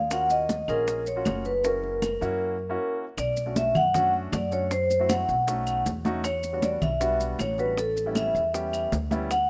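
Afro-Cuban jazz at 157 BPM in 4/4, this short, sultry and sophisticated cut from a longer piece settles into B minor at 3.2 s after opening on Ebm9 and Gb7 harmony. The vibraphone carries the melody up front, its dark, smooth ring shaded by a slow motor vibrato, while the upright bass plays pizzicato with a woody, steel-strung tone beneath it. A concert grand piano supplies intimate accompaniment, present and polished with audible action noise. The percussion bed centres on thick-skinned, damped, high-tuned congas, with round, low-tuned bongos sitting close and dry in the background, distant woody claves in a large room, and grainy, mellow maracas up close. A break from 2.4 to 3.2 s separates the opening passage from the next, and the whole sits in light reverb and studio ambience with the rough feel of a home demo mix.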